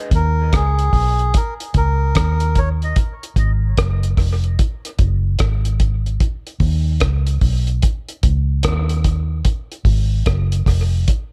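A swung sixteenth-note feel in a steady four drives this deep, heavy dub reggae fragment, cut from a longer piece. The cloth-damped drum kit sits up front with a dry, thuddy sound, a tight kick, hi-hat and rim clicks, its top end rolled off. Beside it, a vintage muted electric bass, played with the fingers, gives a round, foam-muted, amped low end that holds through to 11.0 seconds. A reedy, breathy melodica with a nasal, wooden-cased tone carries the melody only in the opening 3 seconds, its mellow line trailed by tape echo. The harmony moves from Fm to Badd9 and back to Fm, all set in a small room with a dark, warm production.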